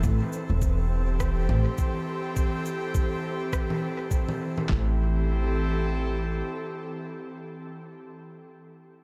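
Ambient dub excerpt in A minor at 103 BPM with a swung sixteenth feel and a deep, meditative mood, built on an Am7 chord where an airy, breathy pad with chorus sustains up front until 7.8 seconds, a woody, dark pizzicato upright bass holds the low end until 6.4 seconds, a muffled, compressed sampler-style kit with thumpy kick, handclaps and snare sits forward beside tape-softened electronic shaker, rim click and congas carrying dub echo, and a bubbling, resonant stepped-filter texture drifts in the background before the shaker, rim click, congas and texture stop at 4.7 seconds and the kit follows at 4.9 seconds, all in light reverb.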